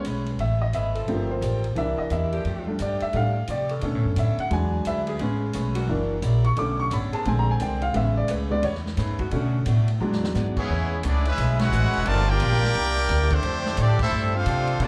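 Swung eighths drive this energetic big band swing passage, cut from a longer piece, as a clear, woody upright piano solos up front over boxy picked acoustic guitar, growly pizzicato upright bass and a punchy vintage drum kit with a rolled-off top, while a saxophone section holds smooth sustained chords in the background; after a drum fill at 10.0 s, a brilliant trumpet section takes the melody at 10.6 s with a bright trombone section on a second line, both carrying slapback echo, all heard through a club PA with a touch of room reverb.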